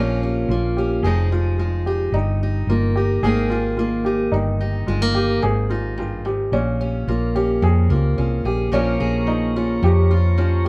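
A straight 4/4 pulse at 109 BPM carries this short, wistful excerpt of acoustic folk in Bb dorian, played by a small band live in one room with light reverb. A fingerpicked steel-string guitar, full-bodied with fresh strings, sits up front as the accompaniment, while a round, dark hollow-body electric bass anchors the low end, also prominent in the mix. An intimate upright piano, woody and slightly detuned with audible action noise, adds arpeggios coloured by tape echo. The chords move from Bbm through Fm7, Eb/G, Absus2 and Ab5 before returning to Bbm at 6.5 seconds. At 8.7 seconds a soft, flute-like tonewheel organ enters with sustained chords through a slow rotary speaker, its key click present, lending the closing section a reflective glow.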